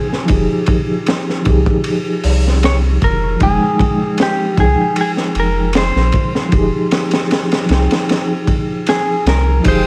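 A twangy lap steel guitar carries the melody, gritty with vintage sampler texture and tape echo, over a reedy electric piano with fast tremolo, a crunchy, saturated breakbeat kit with a punchy kick and high-tuned snare, and a deep, round dub sub bass in this hypnotic, dark trip hop excerpt at 77 BPM in F minor, resting on Fm9 amid vinyl crackle and small-room ambience, before a lush bowed violin section enters at 9.7 seconds.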